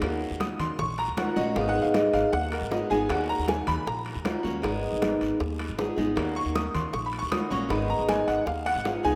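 A dark, boxy picked acoustic guitar sits up front over a woody, thumpy gut-string upright bass, with tight, very quiet bongos, thick-skinned congas, raspy guiro and ringing, distant metal-shell timbales filling in behind. This sultry, danceable Cuban son and guajira groove moves at 156 BPM in Eb minor, swaying between Ebm7 and Abm. From 0.4 seconds a bright, worn grand piano takes the lead with brilliant, short-sustained arpeggios, all bathed in a lush hall reverb that gives the rough home-demo mix a roomy glow.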